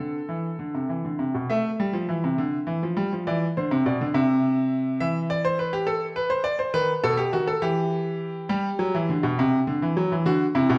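A clear, smooth grand piano with a vintage touch sits up front in this elegant, stately excerpt of a baroque-style two-part invention in A minor, moving at 68 BPM in a straight 6/8 through a harmonic path from Am toward Em, B7 and finally D7, ringing out in a wet recital hall reverb for just under 11 seconds.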